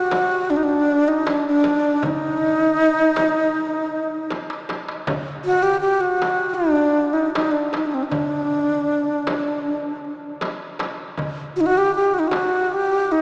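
A breathy, bright alto flute with a wooden head leads this passionate Turkish makam ensemble piece, singing its melody between C4 and G4 with vibrato, soft attacks and an unsteady, close-miked presence up front. Beneath it, a small, high darbuka with a metal shell adds crisp acoustic strokes from a live room, while a deep, large frame drum played with hard hands sounds compressed and saturated. Both drums sit well behind the flute in the mix, and a drum fill arrives between 4.3 and 5.1 seconds. The 79 BPM pulse moves in a straight 4/4, tuned to A4 = 441 Hz. The whole recording is bathed in a long cathedral-style reverb with a small-speaker character, and the frame drum drops out at 12.5 seconds, shortly before this cut from a longer piece ends.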